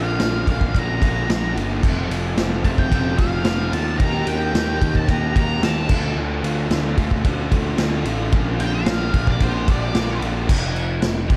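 A straight 4/4 pulse at 111 BPM drives this short, swaggering classic rock cut, taken from a longer piece, with a sunny lift to its chord movement from Bb through F, Eb and Dm before returning to Bb and landing on F5 at 10.5 seconds. The vintage acoustic drum kit comes in at 0.2 seconds and sits up front in a studio room, with a tight kick, a medium-tuned snare, dark cymbals on crash and ride, and a rolled-off top. Beneath it, a growly, bright fuzz bass, picked and overdriven and also placed up front, holds down the low end from F1 to Eb2. A raw garage guitar, double-tracked and overdriven with slapback echo, plays the riff from F2 to G4 with a warm, picked tone. Over this, an octave-fuzz lead guitar carries the melody between C5 and Bb5 through wah and distortion, its dark, picked sound dropping out at 10.2 seconds while the band plays on to 11.4 seconds. Light reverb and small room ambience frame the whole performance.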